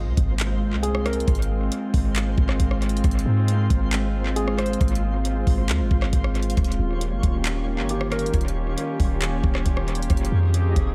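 An impact sounds at the start and ends by 1.3 seconds, opening this short excerpt cut from a longer piece of atmospheric cloud-rap at 136 BPM, felt in half-time in Ab major with a blissful, dreamy mood. From the first moment a warbling, nostalgic pad holds sustained chords with a detuned, lo-fi character, its chorus, tremolo and built-in reverb drifting over sidechain pumping, while a deep, boomy 808-style bass sits up front with a clean sine tone and fast, decaying attack. A twinkling granular texture adds sparkling, octave-up shimmer in the background, bathed in its own reverb. The smooth R&B drum kit arrives at 0.2 seconds, up front with a knocking kick, handclaps, rim clicks and tape-warm hats treated with tape echo. A felt-muted upright piano places brief, intimate melodic figures, its soft tone carrying audible action noise and tape echo, as the harmony moves from Ab69 to Eb9 and finally Fm7 in a dry but echo-heavy mix.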